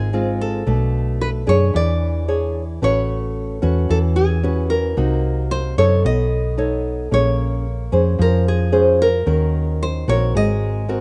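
From the first second, two up-front, fingerpicked nylon-string guitars, one full-bodied and deep, the other warm and classical, carry a romantic, sunny bossa nova melody and its accompaniment at 112 BPM over a dark, round, amped hollow-body electric bass, all in a small-room, rough home-demo sound drifting through rich jazz chords from a rootless Dbmaj7 to Ab9 in this 11-second excerpt cut from a longer piece.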